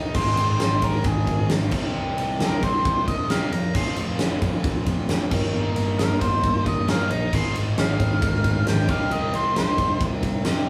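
A straight 4/4 pulse at 134 BPM drives this gritty classic rock excerpt in C minor, cut from a longer piece. A huge arena drum kit sits up front with a punchy kick, fat snare and bright crash and ride cymbals, its natural big-room sound filling the space from 0.1 seconds. A biting overdriven guitar, double-tracked and washed in spring reverb, plays the riff alongside a fuzz-laden picked electric bass that carries an overdriven, direct-and-amped growl. Over them, a dark octave-fuzz lead guitar takes a distorted solo from 0.2 to 10.0 seconds, reaching up to C6. The chords move through Ab, Cm, Fm, Eb/G and back to Ab and Cm, while a moderate large studio reverb and small room ambience give the sense of a band playing live together.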